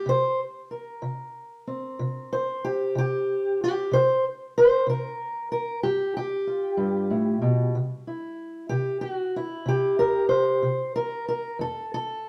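Set in 12/8 at 62 beats per minute with a straight feel, this short cut from a longer acoustic country blues piece moves at an easy, laid-back pace with a rollicking spirit. A single fingerpicked steel-string acoustic guitar carries the whole performance, ranging from F2 up to C5 in C mixolydian. Its tone is dark and boxy with a parlour character, and it sits up front in the sound. The guitar takes a solo passage through the opening 7.7 seconds, with harmony shifting from C5 to G7 before settling on C as a second section begins. A stone room adds a wet reverb around the playing, giving it the feel of musicians performing live together in one space, and the chords drop away near 11.6 seconds as the cut closes.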